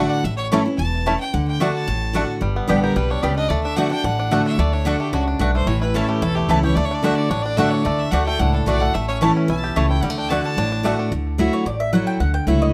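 Straight 4/4 at 221 BPM in D major drives this joyful, virtuosic bluegrass excerpt, with a woody pizzicato upright bass and a full-bodied, picked dreadnought guitar up front and a double-strung mandolin adding stabs. A twangy, fingerpicked banjo carrying plate reverb and tape echo shares the melody with a clear, intense bowed fiddle with light vibrato and plate reverb, and both drop out around 11 seconds. From 11.1 seconds the mandolin takes a brief solo over a Dadd9 chord, captured with close, detailed microphones and light reverb.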